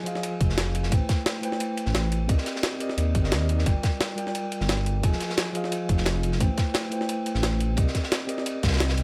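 A mellow tine electric piano opens this melancholic, dreamy piece of liquid drum and bass, its clean, up-front chords passing through tape echo over a Fm7, Am7, Cm7 and Gm7 cycle, tuned to A4 = 444 Hz. At 0.1 seconds two breakbeat layers arrive. One is a crunchy kit with dark ride cymbal and a medium-tuned snare, saturated and rolled off at the top, with high-pass filtering on its cymbals, snare and room. The other is a jungle sampler-style kit whose pitched-up, compressed hi-hat and high-tuned snare sound tape-warm and gritty. At 0.4 seconds a dark detuned saw bass rumbles in up front, deep and beating, alongside a tight, layered electronic kick. The groove moves at 175 BPM in a straight 4/4, and the overall mix is dry, with the bass and kick sitting loudest beneath the piano.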